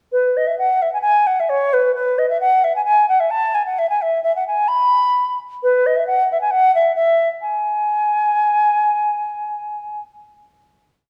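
A lightly swung 2/4 lilt drives this short, lively and rollicking Celtic folk piece, played entirely by a solo baroque flute from 0.1 to 10.0 seconds. The up-front flute has a pure, woody tone with crisp attacks, vibrato and rolled-off highs as it shapes expressive, motif-based song phrases before settling on a final note held from 7.4 seconds. A wet recital-hall reverb surrounds the flute.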